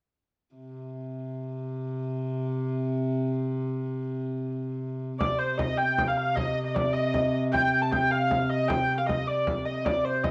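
An ancient, mysterious mood hangs over this short medieval dance in a straight 6/8, cut from a longer piece. A rich viola da gamba opens alone at 0.5 seconds, holding a low C drone with light vibrato, an airy, biting bow and a ringing gut-string tone played in period style. At 5.2 seconds a dark hurdy-gurdy enters up front with the melody, its nasal, reedy wheel-bowed voice moving in a high register. A deep, large frame drum joins at the same moment, its acoustic sound set in a small room and sitting lower in the mix. Both bowed parts carry the colour of cassette tape, and a wet studio reverb wraps the home recording until it ends at 10.3 seconds.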